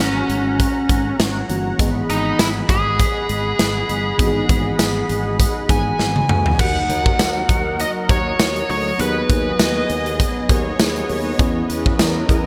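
Set at 100 BPM in 4/4 with a light 16th-note swing, this excerpt of 1980s-style pop feels dramatic and nostalgic, its big rock drum kit sitting up front with a punchy kick, medium-tuned snare, bright cymbals, hi-hat, tambourine and toms, and a drum fill from 6.0 to 6.6 s leading into a new section. A biting, overdriven lead guitar carries the melody with delay until 9.9 s, while a soft, round FM electric piano with chorus and phaser stays in the background as accompaniment. A thick, warbling unison pad holds sustained chords with chorus, and a growly fretless electric bass with ensemble chorus anchors the low end. At 9.6 s a distant, woody studio violin section enters with a dark, vibrato-laden second line touched by delay. The harmony moves from F#7 to Emaj7, then through D#m and G#m/D#, arriving on C#m7/E, all framed by a moderate plate reverb and bright 1980s-style digital production.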